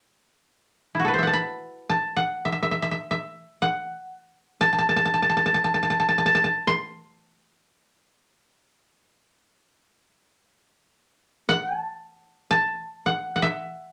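Austere and solitary, this short passage from a longer piece of Japanese traditional music unfolds in free time in the A kumoi scale, tuned to A4 = 442 Hz. A lone koto, played with fingerpicks, sounds from 0.9 s to the close at 13.9 s, moving between E4 and C6 with a dry, woody tone. It sits up front in the mix, framed by a moderate studio reverb.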